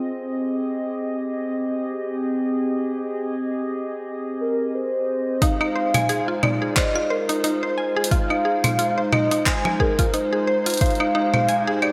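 IDM at 89 BPM in F minor with a light 16th-note swing, eerie and melancholic, this excerpt opens on a warbling, lo-fi tape-like pad with detuned sawtooth and triangle tones holding Abmaj7 and Fm7 chords, joined at 4.4 seconds by a nostalgic, vibrato-tinged lead melody trailing diffuse ambient delay. At 5.4 seconds a woody, round mallet-like FM pluck spins arpeggios through cassette tape and tape echo. A deep electronic kick and a gritty, pitched-up jungle sampler-style kit of claves, handclaps, hi-hat and toms enter at the same moment, both sitting up front in a dreamy mix soaked in lush hall reverb.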